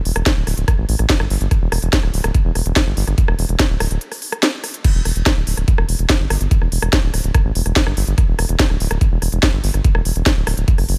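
Psychedelic trance in a straight four-four, this short cut from a longer piece feels intense and mind-bending. A round analog bass sits up front, deep and dark, its sawtooth and sine tones colored by ring modulation, with a fast attack and sustained notes that keep evolving in the low register between D1 and A1. An electronic kick drum, knocking and layered, carries the pulse from 0.3 seconds, its sound re-recorded in a small room and placed up front. A techno drum kit, present from 0.1 seconds, adds a cracking snare, smooth hi-hats, rim clicks and crash cymbals, all layered and produced. After a break from 4.0 to 4.8 seconds, the track drops into its second section, which runs to the end, all within a digital ambience.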